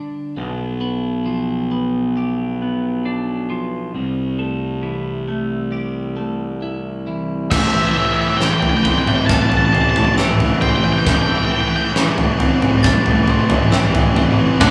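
A bright, twangy twelve-string electric guitar opens this brooding, melancholic post-rock excerpt with phaser-tinted arpeggios in A minor at a slow 67 BPM in straight 4/4, and a round, fuzzy picked bass joins almost at once, sitting up front, as the harmony moves from G7/B to C6. At 7.5 seconds the piece builds into a fuller section on Am7. A huge arena drum kit arrives with a drum fill, its fat snare, punchy kick, toms and crash cymbal pushed forward in a big room. Alongside it come a biting overdriven guitar riff low in the register, a dark octave-fuzz lead guitar carrying the distorted melody up high, sparkling bell-like glockenspiel arpeggios struck with brass mallets in the background, and a very quiet pedal steel guitar holding sustained chords with fingerpicked slide and volume swells. A second overdriven electric guitar surfaces in the background at 14.6 seconds, just as the cut ends, and the whole band sounds as if it is playing live together in one large studio with moderate reverb.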